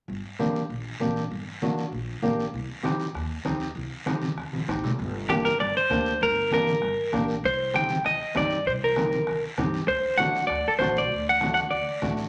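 A woody, thumpy pizzicato upright bass and a raspy, close guiro open this danceable, passionate cumbia excerpt at a brisk 196 BPM in G harmonic minor. A dark, thumb-plucked flamenco guitar and ringing, low-tuned congas in a distant large room join almost at once, with a soft-beater bombo sitting in the background from 2.5 s as the chords move between Gm and Cm. At 5.3 s a twangy, compressed clean electric guitar takes the melody up front, bathed in spring reverb, and the harmony later reaches D7 in a lively club-like space.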